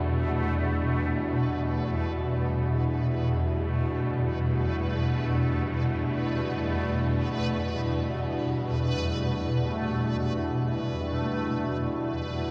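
A vast, echoing space swallows this short cut from a longer dark ambient drone piece, drenched in a cathedral-like reverb that lets every sound hang and decay slowly. Up front sits a swarming drone low in the register, a tense, granular mass of detuned sine voices whose bright edge keeps evolving over its slow attack and long release. Above it, a deep pad holds sustained chords, its moody sawtooth and sine layers thickened by a sub octave and a chorus, giving it a dark, brooding weight. Further back, a reversed, swelling texture of triangle tones drifts along with a soft attack, dreamy and granular, adding a bright shimmer above the pad. All three parts sound together from start to finish across the 12.5 seconds, resting on a single Emadd9 harmony that leaves the mood desolate and cavernous.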